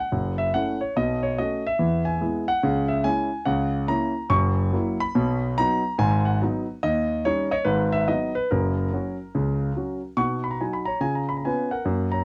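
A solo concert grand piano opens this exuberant stride jazz fragment, cut from a longer piece, and plays alone throughout its 12.2 seconds at a brisk 143 BPM in 4/4 with a moderate swing on the eighth notes. The instrument sounds warm and polished, with a deep bass, short sustain and a present, up-front placement, ranging from F#1 up to C#6. The harmony moves through F#m7, Bsus2, E and C#m before settling into B major at 3.5 seconds, then passes through F#7, G#m7 and D#7 on its way to F#. A new section arrives at 10.2 seconds, returning to B and ending on C#7. The piano sits in a modest booth with a short, tight ambience, and the cassette home recording gives the swinging performance an intimate, homespun character.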